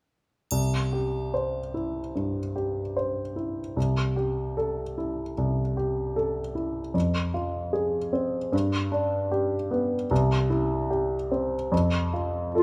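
Cinematic, emotional film score, uplifting and tender, unfolding with a rubato feel as a mellow, intimate baby grand piano carries the accompaniment from 0.5 s, its short sustain and audible action noise sitting up front. An acoustic triangle, heard in a small room, sounds only at the opening until 2.1 s, and the harmony drifts from C through a brief turn to F minor and G before settling back home. A warm, classical clarinet touches a single note at 12.5 s as this fragment of a longer piece ends, all framed by close, detailed microphones in a moderate recital hall.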